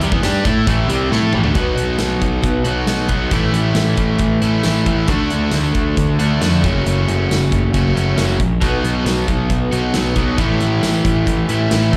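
Over a straight four-beat groove from a big rock drum kit with punchy kick, medium-tuned snare, hi-hat, tambourine and toms, which rolls through a short fill at 1.1 seconds, this sunny, swaggering classic rock clip heard live through a club PA pairs an up-front crunchy overdriven guitar riff with a bright cranked stack guitar set back and given slapback echo, a round, dark, punchy fuzz bass underneath, and, from 1.5 seconds, a very quiet woody twelve-string acoustic adding octave-doubled shimmer as the chords move from A5 through B, A, D and F#m.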